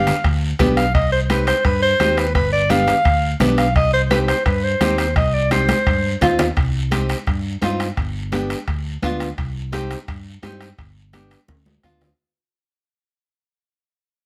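A breathy, clear clarinet opens this passionate, danceable cumbia excerpt up front, singing a jazz-style solo with light vibrato and scooped notes over a classical nylon-string guitar, fingerpicked with audible finger squeak, and a dark, round, amped electric bass. The tempo is a brisk 171 BPM in a straight 4/4, and the harmony swings between G7 and C minor in C harmonic minor. A soft-beater bombo and a raspy guiro set the dance pulse, while ringing congas and vintage, band-limited metal-shell timbales sit in the background, and drum fills close each section. The clarinet drops out at 6.2 seconds, leaving guitar, bass and percussion to carry the second section as the piece fades out from 6.6 seconds. A light reverb gives the whole a small-room sense of space.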